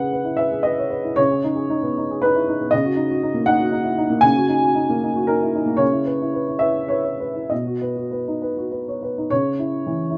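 A dark, woody upright piano plays alone throughout this short neoclassical minimalist piece, its slightly detuned, mellow tone sitting up front in a light reverb and tuned to A4 = 438 Hz. The mood is intimate and melancholic, moving in a rubato 3/4 between 97 and 121 BPM in C# dorian. Chords drift from C#m7 through G#m/C# and D#m/C#, returning to C#m7 before a B and a closing C#m at 9.3 seconds, in a brief excerpt cut from a longer work.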